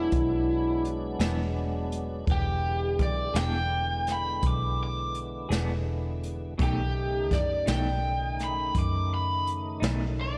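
A raw garage guitar carries the melody up front, its picked, overdriven tone soaked in spring reverb and slapback echo as it ranges from E4 to D6. This is a laid-back, gritty slow blues in 12/8 at 56 BPM, counted in dotted quarters with a straight feel, sitting in E mixolydian and moving from E7 to B7 at 6.6 seconds in this short cut from a longer piece. Beneath it, a tonewheel organ holds sustained chords with a full, lightly overdriven sound, key click, chorus vibrato and a slow rotary speaker. A dark, foam-muted fingered electric bass sits up front with a round, punchy attack, while a jazz brush drum kit supplies hi-hat, boomy kick and a medium-tuned snare with a small-room character. At 1.2 seconds a twangy, slightly broken-up electric guitar through a small old amp joins in the background, adding tremolo and slapback echo to its accompaniment. A moderate, lush hall reverb gives the whole mix a big arena sound.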